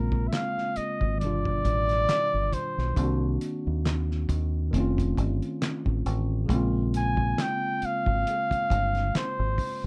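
A breathy, mellow flugelhorn carries the solo melody from the start, floating with light vibrato over a worn, slightly out-of-tune tine electric piano with a touch of overdrive and a round, dark fingered dub bass sitting up front. This soulful, smooth neo-soul and R&B excerpt moves at a slow 68 BPM with a gentle sixteenth-note swing in Bb dorian, cycling from Bbm9 through G7b13, Cm7b5 and F7b13 before settling back on Bbm9. A cloth-damped, muffled drum kit with a fat snare, tight kick, hi-hat and handclaps adds gritty, lo-fi thud, all captured dry in a rough home-demo mix.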